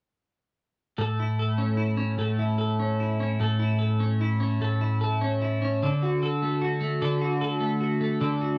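Cut from a longer piece, this home cassette recording with a moderate studio reverb presents a heartfelt, tender pop passage in 6/8, where a bright, twangy, double-tracked twelve-string electric guitar, clean, picked, compressed and up front, plays accompaniment from 1.0 to 8.6 seconds, moving from an A chord to a D chord at 5.8 seconds.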